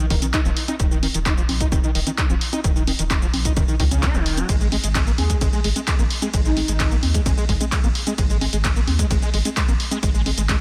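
A dense, heavily limited modern master sets this raw, driving acid house fragment in a digital ambience, cut from a longer piece. An overdriven acid bass riff runs from the first moment, squelchy and resonant with a fast filter pluck, thickened by ensemble chorus, cassette tape grit and tape echo, and pumping against the sidechain. Beneath it a deep, saturated sub bass sustains with the same pumping, while a dry, punchy electronic kick anchors the straight 4/4 pulse. An up-front analog drum machine fills out the groove with congas, handclaps, hi-hat, ride cymbal and shaker. The harmony settles on an Ab5 chord at 4.5 seconds, and at 5.2 seconds a breathy, flute-like synth lead drifts in the background with soft attack, vibrato, chorus and tape echo before dropping out at 6.9 seconds.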